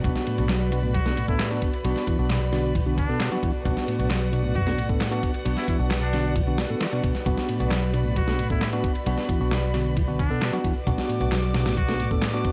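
Gritty, up-front sampler-style drums with a thumpy kick drive this energetic, funky breakbeat passage at 133 BPM in B minor, layered with a quieter electronic house kit of handclaps, ride and tambourine, while a round, foam-muted electric bass holds B1. A mellow, flute-like tonewheel organ riff turns through a slow rotary speaker in the background, a tine electric piano stabs with 12-bit sampler grit and tape echo, and dark, bowed chamber strings sustain chords that pump under sidechain. At 0.9 seconds a nasal trumpet with a straight mute takes the jazz-style solo melody, scooping notes with vibrato through an old-record haze and tape echo, all captured in a dry, hardware-gritty mix cut from a longer piece.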